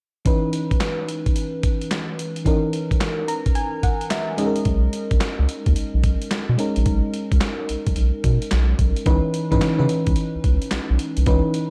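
A dark, warm production wraps this slick, punchy new jack swing cut, taken from a longer piece, in C# dorian at 109 BPM with a 65% sixteenth-note swing. A lush, dreamy FM electric piano with a soft pad layer and chorus carries the C#m9 and Bmaj13 chords, adding a fill at 3.0 seconds. A gritty, compressed sampler-style kit of thumpy kick, medium-tuned snare, hi-hat and handclaps sits up front with a tape-warm, roomy grit, and a round, deep analog bass enters at 4.7 seconds.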